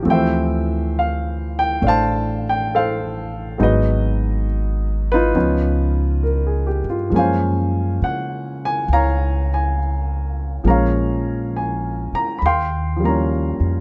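This jazz ballad moves at a slow 68 BPM in 4/4 with a swung eighth-note feel, carrying a late-night, intimate mood. A baby grand piano provides the accompaniment across the full 13.8 seconds, its natural, warm voicing placed up front and spanning from E3 to C6. An acoustic upright bass joins at 0.1 seconds, played pizzicato on steel strings with a woody, dark tone that sits close in the mix. The harmony opens on Dm9 and passes through Abm7, Db9 and a lush Gbmaj9#11 before settling toward Bbm7 and Eb9, lending the passage a rich, searching color. Recorded with close, detailed microphones and little reverb, this fragment of a longer piece feels dry and immediate, as though the players were in the same small room as the listener.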